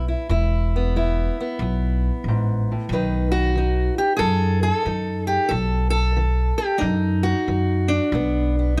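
A fingerpicked steel-string acoustic guitar and a pizzicato upright bass start together, both placed up front in this short excerpt from a longer acoustic country blues. The guitar carries the melody with a boxy, parlour-style tone, ranging from its low E2 up to B4. Beneath it, the steel-strung upright bass sounds woody yet bright, holding down the low end from E1 to F#2. The groove in 4/4 swings the eighth notes, giving the playing a soulful, swaggering mood. The harmony moves from E to B at 2.9 seconds, and a light reverb lends the pair a little space through the 8.8-second passage.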